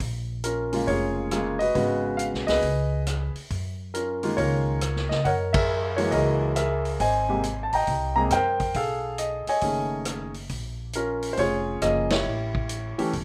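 A clear concert grand piano carries the melody up front, entering at 0.4 s with a natural tone and deep bass as it ranges from the middle of the keyboard up into its upper register. This is a moody, late-night jazz piano trio excerpt in swung 4/4, cut from a longer piece and moving through minor-seventh and lush extended chords before settling on an A7 near the end. Beneath the piano, a woody pizzicato upright bass on steel strings holds down the low end from the first moment, reaching down to a deep E1. A vintage drum kit in a studio room adds dark cymbals, a punchy kick, a medium-tuned snare, hi-hat, ride and rim clicks, its sound mid-forward with a rolled-off top. The whole band hits accents together at 5.5 and 12.0 seconds, and a light reverb gives the trio a sense of shared space.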